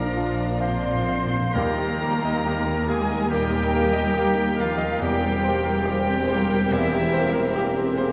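Lush and passionate, this romantic classical passage for piano and orchestra unfolds in a rubato 4/4 at 64-73 BPM in Eb major, with the clear grand piano sharing the melody with an intense, vibrato-rich violin section, while airy flute, present oboe, a distant clarinet and a hushed sul tasto second violin section weave second lines over mellow bassoon, expressive violas, soft-attack French horn chords, cellos with portamento and background double basses; quiet calf-headed timpani fill the opening until 1.5 s, a tuba joins the bass at 1.5 s, and a barely audible, tight trombone section adds sustained chords from 1.6 s, the ensemble set in a vast, echoing space.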